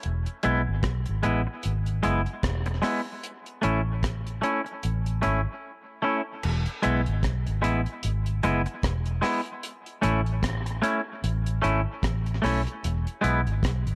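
A deep reggae drum kit opens this hazy, laid-back dub reggae excerpt, cut from a longer piece at 75 BPM in E major, its kick, rim click, hi-hat and crash cymbal sounding dark and dry with a rolled-off top and a tight kick, trailed by tape echo. A vintage muted fingered electric bass comes in at 0.1 seconds, sitting up front in a low register with a round, foam-muted, amped tone. A twangy electric guitar follows at 0.4 seconds as accompaniment, clean, picked and compressed, with a warbly pitch drift and its own tape echo. The harmony moves between E and A, and the swung sixteenth-note feel keeps the groove loose. A break arrives at 5.6 seconds before a second section begins at 6.4 seconds, all set in a light studio reverb.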